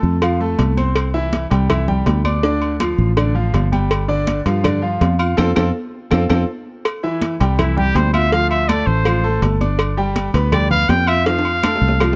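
A clear, punchy trumpet with scooped notes steps up front at 7.6 seconds for a festive, sunny salsa solo at 163 BPM in C major, playing over a bright, brilliant concert grand piano, a round, foam-muted fingered electric bass, high-tuned congas, a tight cowbell, ringing agogo bells and timbales and woody claves, with a band accent and a drum fill before the solo, all in a dark production with light reverb.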